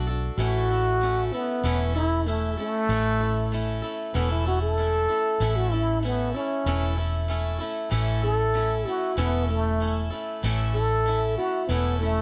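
Honky-tonk and classic country at 96 BPM in a straight 4/4, with a nostalgic, down-home mood, heard here as a short cut from a longer piece. A trombone with a plunger mute carries the melody as a solo from start to finish, its muted wah-wah tone shaped by light vibrato and scooped notes in a jazz style, close-miked and up front. Beneath it, a picked swing-style acoustic guitar supplies the accompaniment with a bright, boxy sound from fresh strings, sitting a little further back in the mix. A vintage muted fingered electric bass holds down the low end, dark, foam-muted and punchy, with a round, amped tone placed up front alongside the trombone. The sound is dry and intimate, captured with close, detailed microphones and little reverb, with an A chord arriving at 0.4 seconds.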